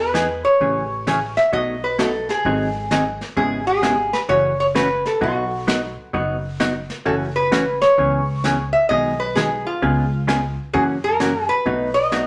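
Western swing country with a swinging, down-home mood, this short cut from a longer piece rides a swung eighth-note feel in 4/4. Up front, a lap resonator guitar carries the melody with a metallic, nasal slide tone, played with fingerpicks. Beside it, a vintage hollow-body jazz guitar supplies clean, picked accompaniment, its dark, compressed electric sound moving through a jazzy run of seventh chords from Emaj7 toward a closing B7. Underneath, a woody, thumpy upright bass on gut strings plays pizzicato, while a vintage brush drum kit keeps time with brushes on a medium-tuned snare, hi-hat and a tight kick, its top end rolled off. The whole band sits in a studio room bathed in a wet studio reverb, with every part sounding from the opening moments through to the close of the 12.3-second excerpt.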